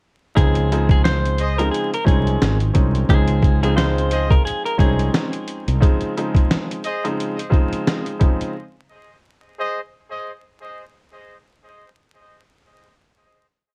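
A laid-back boom-bap groove at 88 BPM swings its sixteenth-note hats over a thumpy kick and medium-tuned snare from a gritty, pitched-down sampler kit, up front with a round, dark fretless bass line looping deep beneath it in Db major on a Dbmaj9 chord. A woody upright piano with audible action noise repeats chopped chords through cassette-tape coloring, while a scooped, picked clean guitar loops a short melody with tape echo until 5.1 seconds and a clear trumpet section punches short stabs from 1.4 to 9.8 seconds. The whole piece feels warm and confident, wrapped in light reverb, vinyl crackle and warbling old-tape pitch drift.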